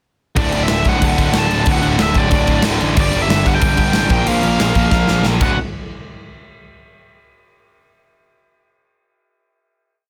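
A punchy kick, medium-tuned snare and bright crashes from a big rock drum kit, set up front in a big room, drive a fast, straight 4/4 punk groove at 184 BPM, with a drum fill from 4.9 seconds leading into a final hit at 5.6 seconds. In the background, a sludgy distorted guitar and a second overdriven electric guitar drive eighth-note power chords over a growly fuzz bass pumping eighth notes, moving through D, G5 and Bb5, while a biting lead guitar states a short motif-based melody up high. The whole piece is a rebellious, upbeat burst of punk rock with light reverb and a dense, heavily limited modern master.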